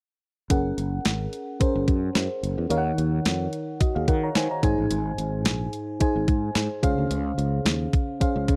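A thumpy, overdriven 12-bit drum machine with a medium-tuned snare drives this nostalgic, uplifting 1980s-style pop excerpt at 109 BPM with a light sixteenth-note swing, entering together at 0.5 seconds with a growly, punchy fretless bass and a round, dark FM electric piano treated with chorus and tremolo, moving through Gbadd9, Ebm7, Ab and Dbmaj7 in a dry, close 1970s-style studio sound.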